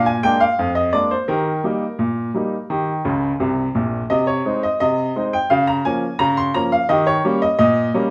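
A bright, woody upright piano plays alone in this lively, cheerful ragtime passage at 86 BPM in a straight 2/4, its vintage tone spanning Bb1 to C6 as it moves from Bb7 to Eb and on toward Eb7, adding a brief fill between 3.0 and 4.1 seconds, all heard from further back in a club room with a wet reverb in a short cut from a longer piece.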